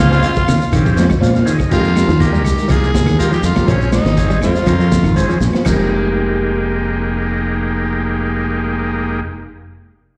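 Heard through a venue's PA with recital-hall reverb, this funky, hypnotic afrobeat excerpt sets a raspy, growling tenor saxophone melody over a bright, growly fingered bass up front, a buzzy vintage combo organ with heavy vibrato that plays a fill from 1.0 to 1.7 seconds, dark stabs from a clean electric guitar, hollow-body guitar arpeggios, a lo-fi, muffled breakbeat kit that plays a fill before stopping at 5.8 seconds, grainy shekere and woody claves, while a clear alto saxophone adds a brief second line in the background.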